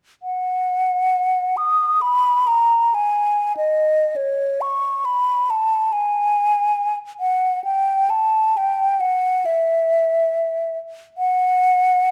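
The rhythm moves freely in rubato over a loose 4/4, giving this short classical fragment of a longer piece an expressive, unhurried breath. A solo concert flute carries everything from 0.2 seconds to 12.1 seconds, its hollow, airy tone sitting up front with gentle vibrato and clearly tongued notes. The line stays between C#5 and D#6, and a new section begins around 4.2 seconds. The mood is nostalgic and serene, with the instrument tuned to A4 = 438 Hz. Close, detailed microphones and a light reverb keep the mellow sound intimate and present.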